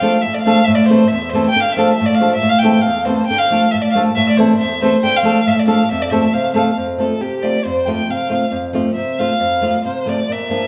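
Wild and virtuosic, this swung Balkan folk passage in 2/4, cut from a longer piece, pairs an up-front bowed violin melody, expressive with vibrato, soft attacks and sliding portamento, with a fingerpicked acoustic flamenco guitar whose finger squeaks come through over chords rocking between Dm and Am before landing on F, the violin stepping into a solo at 6.8 s, all captured as a band playing live in a wet stone room.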